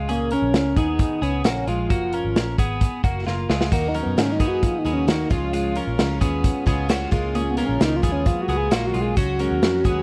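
Youthful and nostalgic, this jangly indie pop excerpt moves at 132 BPM in a straight 4/4, built on a clean, compressed twelve-string electric guitar playing arpeggios, a round, foam-muted picked electric bass, and a raw garage drum kit up front with a punchy kick, gritty saturation, a rolled-off top and a fill at 3.3 seconds. A mellow, detuned synth lead with a sub octave carries the melody through chorus and slapback echo, and at 3.7 seconds a bright, shimmering plugged-in twelve-string acoustic guitar joins in the background. The dry, close 1970s-style studio sound frames chords moving from A#m7 through F#maj7 and D#m back to A#m7, then settling on C#sus4.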